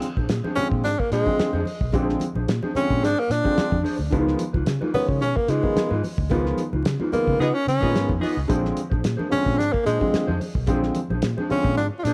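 A mellow electric guitar, dark upright piano stabs, a cloth-damped, thuddy drum kit and soft-handed congas open this gritty, playful funk clip together, set in Bb mixolydian at 110 BPM in a straight 4/4. A vintage, foam-muted fingered bass arrives at 0.2 seconds, round and punchy, followed by a very quiet, band-limited cowbell, while the kit's fat snare and tight kick sit dry with a rolled-off top. From 0.6 seconds a breathy, close-miked tenor saxophone carries the melody up front in a jazz style, its scooped notes trailed by tape echo. The harmony moves from Bb9 to Db9 and back to Bb9, and a band accent lands around the middle, where a distant, roomy horn section adds a brief second line with light vibrato. The woody piano rings with long sustain, and the whole mix is close and dry under a layer of vinyl crackle, cut from a longer piece.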